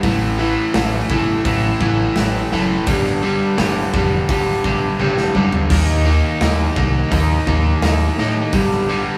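Brooding and cathartic, this post-rock passage pairs a double-tracked, overdriven electric guitar riff sitting up front with a growling, overdriven picked bass and a big acoustic rock kit of punchy kick, medium-tuned snare, toms, hi-hat and bright crash cymbal, which plays a fill at 5.0 seconds, all captured as a band playing live in one small room with moderate studio reverb.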